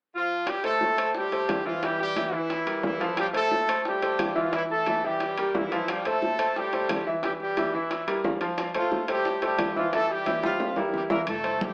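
A sunny, danceable salsa clip in F major runs at a brisk 178 BPM in straight 4/4, cut from a longer piece. A tight, punchy horn section carries the melody up front from the very start, joined almost at once by bongos, timbales and a worn concert grand piano whose chords circle through Fadd9, Edim and Gm13/E. The piano sits present and intimate with audible action noise and deep bass, while the round, low-tuned bongos sound compressed and saturated under hard hands and the metal-shell timbales ring out in a live room. A drum fill from 10.4 to 11.3 s leads into a brief final moment where the bright, thin-skinned congas and a dark, woody gut-string upright bass plucking a low F1 arrive at 11.3 s. The whole clip is bathed in a wet studio reverb and filtered through an AM radio sound.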